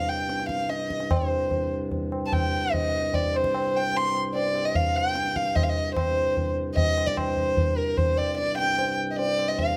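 A dark, intimate violin, played sul tasto with light vibrato and a soft attack, carries a solemn, introspective Hindustani melody in raga kafi over a reedy, breathing harmonium drone and low-tuned tabla with a short ring, all caught by close, detailed microphones with light reverb in this brief cut from a longer piece.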